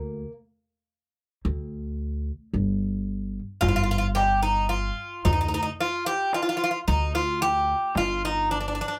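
Hypnotic and longing, this brief cut from a Turkish makam ensemble piece in G makam nihavent moves at 111 BPM in a straight 10/8, with a bright, metallic Greek bouzouki carrying the melody up front on doubled strings, a woody, thumpy pizzicato upright bass on gut strings beneath it, and a deep clay-shelled darbuka entering at 3.6 seconds in the background of a lightly reverberant live room.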